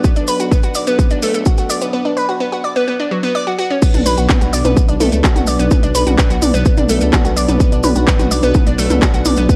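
Dramatic and cinematic, this melodic techno excerpt in B minor moves at 127 BPM, building through a drum fill before dropping at 3.8 seconds, with the kit's crash, handclaps, smooth hats and toms, a punchy, up-front kick, grainy maracas in the background and a menacing, detuned saw bass entering at 0.2 seconds with a filter swell and transformer saturation. A bright, round analog pluck plays arpeggios through chorus and analog delay, its noise layer and moving notch adding motion, while a deep, nasal pad holds sustained chords with a slow attack; the pad, pluck and bass all pump against the sidechain. The sound is dry and gritty, with light reverb on a hardware recording that holds onto a single Bm chord.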